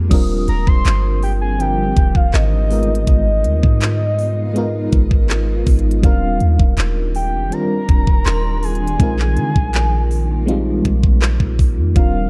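A warbling FM electric piano with tremolo and phaser opens this dreamy, smooth contemporary R&B excerpt at 81 BPM in Eb major, alongside a deep, boomy 808-style bass with a pure sine tone and a blurred, detuned granular pad that drifts in the background with its own reverb. A faint, inharmonic synth chime rings with chorus, phaser and slapback echo at the start and returns at 8.3 seconds. The electronic trap kit sits up front in straight 4/4, its knocking kick, crisp hi-hats, handclaps, rim clicks and crash cymbal driving the groove. From 0.5 seconds a soft, round, full-bodied synth lead carries the melody, layered with a sub octave and coloured by chorus, phaser, vibrato and slapback echo. The harmony moves from Ebmaj13 to Abm6, back to Ebmaj13 and onto Bb9sus4, all within a dark, warm digital ambience.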